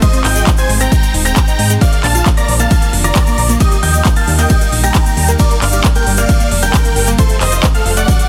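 Uplifting trance with a driving, emotional pull, this short excerpt cut from a longer piece moves through a chord sequence of Ab, Bb, Eb, Gm and F. A huge, euphoric supersaw lead carries the melody, its detuned unison sawtooth tone bright and compressed, colored by a phaser and a digital delay, all pumping against the sidechain. Above it, a clear, intimate grand piano with audible action noise plays a second line high in its register, while a shimmering, ethereal pad holds sustained chords with slow attack and long release, bathed in chorus and its own reverb. In the background an analog pluck spins arpeggios with a nasal, round character, a filter sweep and a noise layer, treated with chorus, phaser and delay. A punchy, tape-warm electronic kick sits up front with a layered dance kit of handclaps, crisp hi-hats and ride cymbal, a grainy tube shaker adding texture, and a dark, round FM bass entering at 0.2 seconds, pumping beneath it all. 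The mix carries light reverb and a dense, heavily limited modern master.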